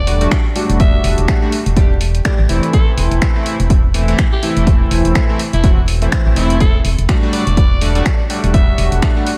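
A swung 124 BPM deep house groove in E minor, built on a punchy analog kick up front with snaps and hi-hat, carries this moody, hypnotic excerpt as a dark, hollow FM bass pumps beneath glossy chorused polysynth stabs moving from Em11 to Am/E at 2.7 seconds, while a raspy, forceful alto saxophone with light vibrato, sampler grit and delay sings over light reverb and vinyl crackle.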